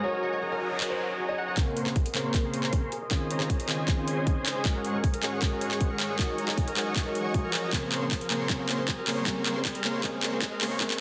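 Lush and bittersweet, this half-time future bass passage, cut from a longer piece, opens with a warm grand piano melody in the background that sidechain pumping and dub echo carry before it stops at 1.5 seconds. A fingerpicked, ringing concert harp plays arpeggios throughout under a low-pass filter and delay, alongside a huge, thick, detuned supersaw riff with a sub octave, fast attack and vibrato that pumps with the sidechain. Trap drums with metallic hats and handclaps come in up front at 0.8 seconds. From 1.6 seconds a worn, slightly out-of-tune tine electric piano with light overdrive adds accompaniment, a hard-clipped, tape-warm electronic kick arrives, and the section becomes a long build-up with a drum fill, a background riser and filter sweeps on the harp and across the mix. The chords move through lush extended harmonies such as Bbm9, Dbmaj9 and Ab9sus4, and the whole sits in a moderate digital room reverb with a dense, heavily limited modern master.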